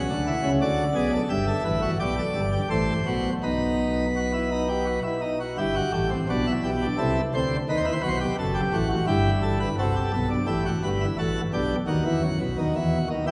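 Stately and elegant, this short excerpt of a baroque-style three-part fugue for solo pipe organ moves at 86 BPM in a straight 3/4, tuned to A4 = 439 Hz. The organ speaks on a full plenum with mixtures, giving a brilliant, baroque-voiced sound with an audible chiff at the front of each note, and it sits up front in the mix. Its range stretches from F#1 at the bottom to F#5 at the top, where a lone high note opens the passage before the harmony settles around B minor, G and A minor. A contrasting middle passage begins at 5.6 s, leaning on E minor and a B7, and the opening material returns at 9.8 s with colourful chords such as Cmaj7 and A13sus4 before landing on B. A wet church reverb with a long 3.6-second decay surrounds the instrument and lets each chord hang in a resonant, spacious hall.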